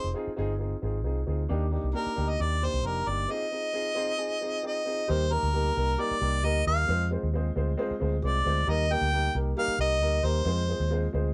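Uplifting and warm, this short section of an uptempo 1960s-style soul piece puts a jazz-style harmonica up front, its present solo line full of scooped notes and light vibrato. A dark, woody upright piano accompanies with a mellow, long-sustained tone and plays a fill from 3.7 to 5.1 seconds, while a vintage foam-muted fingered electric bass sits up front with a round, punchy, amped tone. Light reverb lends the trio a touch of space as the harmony moves between Ab6, Ebmaj7, Eb and Fm.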